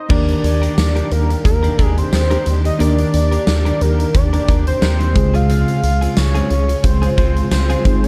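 Romantic and uplifting, this short excerpt of 1980s-style pop in Eb major moves at 89 BPM with a gentle 16th-note swing, resting on an Ebmaj7 chord before shifting to Dbmaj7 at 5.2 seconds, all in a dark production with light small-room reverb. A fat, detuned analog lead carries the melody with chorus and tape echo, over a huge arena drum kit with a punchy kick, fat snare, crash, hi-hat and tambourine, and a rubbery, bouncy square-wave bass sitting prominently beneath. Further back, a worn, slightly out-of-tune tine electric piano plays accompaniment, a scooped direct-recorded clean electric guitar picks a riff through subtle chorus and tape echo, and a very quiet, silky string machine holds sustained chords.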